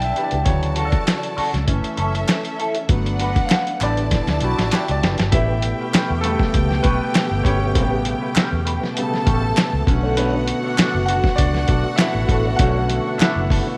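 Lush 1970s-style soul with a smooth, light swing, this excerpt is led by a clear, polished concert grand piano soloing throughout over a muffled, overdriven sampler-style drum kit with a thumpy kick, and a dark, round, foam-muted electric bass. Woody, bowed strings carry a lush second line while a bright, twangy guitar riff with wah and phaser sits in the background, and very quiet, crisp handclaps join at 1.1 seconds. After a drum fill at 4.1 seconds, a lightly overdriven tonewheel organ with key click, chorus vibrato and slow rotary speaker enters at 5.3 seconds with sustained chords, all set in light reverb.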